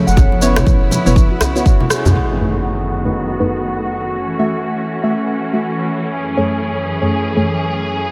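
Within the opening two seconds of this hypnotic afro house excerpt, a punchy, up-front electronic kick plays alongside a round analog bass, ringing congas, cracking djembe, grainy maracas, a layered house kit with rim clicks and toms, and a mellow handpan arpeggio. Throughout, lush bowed strings and deep chorused chord stabs pump under sidechain, and both sweep through filters from the electronic impact at 2.2 seconds.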